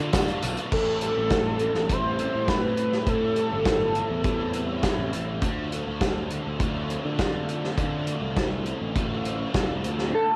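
A loose, straight-ahead indie rock groove in 4/4 comes from an acoustic drum kit that sounds roomy and distant yet sits up front, with dark cymbals, a medium-tuned snare and a punchy kick; a jingly tambourine rings close and dry in the background for the opening 0.7 seconds. Beneath it, a fuzzed, overdriven picked bass plays direct and amped, while two overdriven electric guitars share the riff: one warm with phaser tucked behind, the other bright with ensemble chorus and analog delay. Up front, a gritty, screaming synth lead built from detuned sawtooth and square waves carries the melody with a guitar-like bite, distortion, chorus, phaser, vibrato and analog delay, sounding until 5.1 seconds and briefly reappearing near the end. The harmony moves from D minor to A minor seventh and settles on D minor seventh, giving a moody, bittersweet cast. Captured as a home recording on cassette with light reverb, this fragment is cut from a longer piece.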